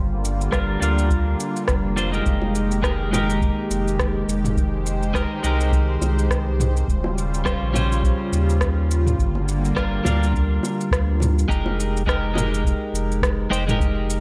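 Wistful and smooth, this sunset chillout excerpt moves at 104 BPM in F minor with a swung sixteenth feel, opening on a lush, airy sawtooth pad thickened by chorus and phaser that holds sustained chords until 11.5 s over a round sine sub bass sitting up front. An overdriven deep house kit of rim click, shaker and toms enters at 0.2 s, joined at 0.5 s by a dry, deep electronic kick and a clean, compressed twelve-string electric guitar that plays accompaniment, softened by a low-pass filter and tape echo, while low-tuned bongos with soft hands murmur in the background from 2.4 s. Chords drift from Gm7 through Fm11 and Eb13, and the dark production is bathed in light digital ambience.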